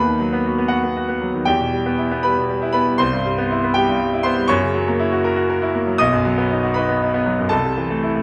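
Moving in a compound metre with a freely stretched, rubato pulse, this is a short fragment of a classical virtuoso piano study, cut from a longer piece. The mood is stormy and passionate, carried by a solo concert grand piano that plays throughout its 8.2 seconds, spanning a broad range from deep bass notes up into the upper register. The instrument sounds clear and open, sitting up front with a deep low end that gives the harmony real weight. The chords move restlessly from a major opening through minor and seventh colours, including a dominant seventh that pulls back toward a major resolution before turning to a minor chord at the close. Close, detailed microphones capture the piano intimately, while a moderate recital hall reverb lends a natural sense of space around it.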